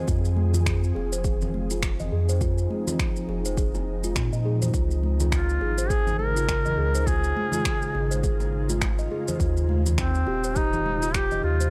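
Organic downtempo with a warm, earthy mood and a swung, unhurried pulse, cut from a longer piece and moving through Fm7, Db and Cm/Eb. A round, ringing steel tongue drum plays meditative arpeggios over an ethereal, airy pad with chorus and built-in reverb, a deep sine sub bass pumps under an overdriven electronic kick, shaker and finger snaps, and acoustic congas and bongos sit in the background. At 5.3 seconds a solo duduk enters up front with folk-style vibrato and analog delay, all captured in a dry, gritty hardware sound.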